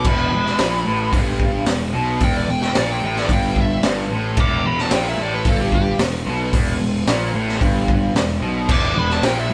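Recorded live in one room with light reverb, this gritty, brooding blues rock and southern rock fragment sets a warm, distorted lead guitar solo over a bright, double-tracked overdriven guitar riff, a growly fuzz picked bass and a raw garage drum kit with a punchy kick, a high-tuned snare and dark cymbals sitting up front.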